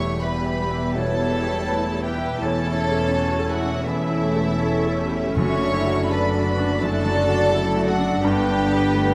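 A rubato 4/4 at 83 BPM carries this moving, bittersweet orchestral film-score excerpt, where floating sul tasto symphonic violins sing the melody over an airy, crisp flute section and an intimate chamber violin section on the second line. Beneath them, a clear baby grand piano with audible action noise, dark woody violas, mellow French horns holding sustained chords and ringing harp arpeggios fill the background, while bowed cellos and double basses anchor the bass through chords moving from Em to A/E, D/F# and G. A very quiet, dry timpani note sounds from 5.4 to 6.4 seconds, all within a moderate scoring-stage reverb captured by close, detailed microphones.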